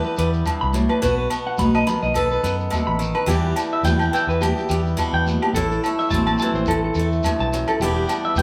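A clean, compressed electric guitar plays high arpeggios through a danceable, bittersweet highlife groove cut from a longer piece, over a dark, round and punchy fingered electric bass and an up-front, bright, boxy picked swing-style acoustic guitar with audible finger squeak, while ringing agogo bells, a grainy, vintage-sounding shekere and high-tuned, distant congas played with soft hands fill out the percussion, all moving through Em, B and Am as the band plays live together in one room with a wet studio reverb.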